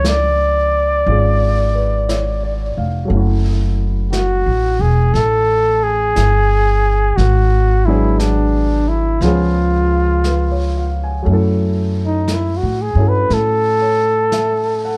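Wistful and smoky, this slow jazz ballad at 59 BPM in F# minor swings gently in 4/4 as an up-front, mellow flugelhorn sings the melody with vibrato and a soft attack before taking a solo at 11.3 seconds, supported by a polished grand piano with short sustain, a woody, growly pizzicato upright bass, and a distant, roomy brush kit on snare and hi-hat, all in a dark production with light reverb, moving through chords such as C#7b9, F#m7 and G#m7b5 in this cut from a longer piece.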